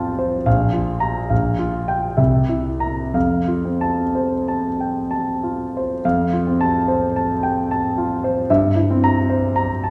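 Heard from further back in a reverberant recital hall, with lossy compression artefacts, this short, lyrical romantic character piece for solo concert grand piano unfolds in F major and 3/4 at a rubato 59-76 BPM. The smooth, vintage-toned instrument offers deep bass as a high Bb5 rings out at 0.5 s before a Gm7/Bb to C7 to F progression and a C7/G at 8.5 s, giving the fragment a warm glow as it restates its opening material.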